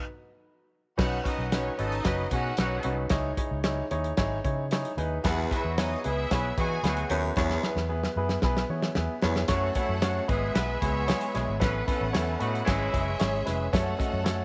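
A raspy, close-miked baritone saxophone growls a low riff from 5.2 to 9.4 s over urgent, driving 1960s-style soul, where a warm grand piano plays alone for the first second before a fat-snared drum kit, round foam-muted electric bass, bright bowed violin section and tight octave-doubled horn section join; the drums add a fill from 7.4 s, and everything sits in moderate echo-chamber reverb in this cut from a longer piece.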